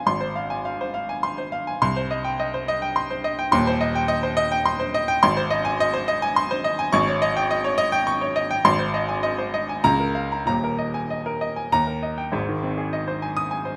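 A clear, up-front baby grand piano with a natural, short-sustained tone carries this heroic, sparkling fragment of a virtuoso classical piano study alone, moving in a rubato 3/4 at 104 BPM across a span from Eb1 to Eb6, settling into Ab major at 5.2 seconds and passing through Eb harmonies before a new section opens at 12.3 seconds, all set in a moderate large-studio reverb.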